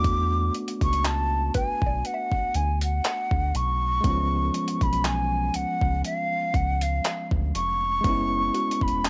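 Sensual and moody, this contemporary R&B excerpt rides a lightly swung groove, with a breathy concert flute carrying the melody up front, its vibrato and expressive tongued notes colored by cassette tape. Beneath it, a bell-like tine electric piano lays down clean, bright chords, while a round, deep analog bass and a dusty, gritty sampler-style drum kit of thumpy kick, hi-hat and handclaps, overdriven and tape-worn, sit forward in the mix. From 1.5 seconds a woody, mallet-like synth pluck adds a mellow background texture treated with chorus, phaser and analog delay, and the recording has the dry, intimate feel of a home cassette.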